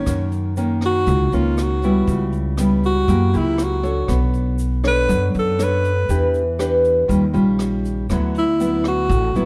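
Bossa nova with a sunny, relaxed mood, this brief cut from a longer piece features a breathy, mellow tenor saxophone soloing up front with vibrato over fingerpicked, full-bodied nylon-string guitar, a woody, growly pizzicato upright bass, a natural brush drum kit with a punchy kick, hi-hat and rim click, and a grainy tube shaker tucked in the background, set in a dark production with light reverb.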